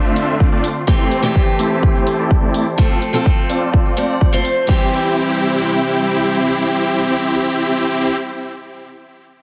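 Triumphant and uplifting, this festival progressive house excerpt at 126 BPM in C major sets huge, detuned supersaw chords up front, pumping and filtered through a sweep until 4.7 seconds, over a bright, boxy picked steel-string acoustic guitar with delay and a clear, vibrato-rich string section in the background, while a big-room kit with crash and hi-hat from 0.2 seconds and a punchy electronic kick from 0.4 seconds drive until they stop at 4.8 seconds, all through a lush hall reverb and a heavily compressed, radio-ready sound as the chords move from Dm7 through Am7 and F to C.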